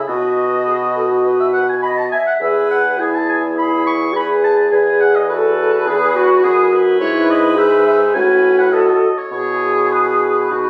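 A clear clarinet, set in the background, and a warm bassoon bass open this cheerful, spirited classical-period movement for wind quintet in E major at a quick 104 BPM in 4/4. From 0.1 seconds, a hollow, mellow silver flute carries the melody with vibrato and a crisp attack, a roomy oboe with light vibrato sings the second line, and a dark, smooth-topped French horn stands out most among the accompanying parts over harmony that moves from B through E and F#m/A to E/B. Cut from a longer piece, it sounds as if caught on a phone in the room, with light reverb, while the flute and oboe have a distant air.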